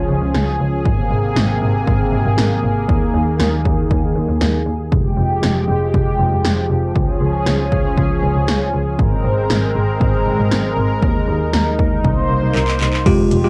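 A lush, detuned sawtooth pad opens this driving, nocturnal synth-pop excerpt at 118 BPM, its chorus-thickened chords moving from Db through Abadd9, Ebsus4 and Fmadd9 before landing on Cm7, while a single bowed double bass adds an earthy, gently vibrato-tinged low end. Up-front 80s electronic drums bring a punchy kick, gated snare, metallic hats and handclaps, capped by a fill from 12.6 s, and a bright, bell-like tine electric piano appears only at 13.1 s. The whole piece carries the tape-softened character of a cassette home recording in a small, booth-like room.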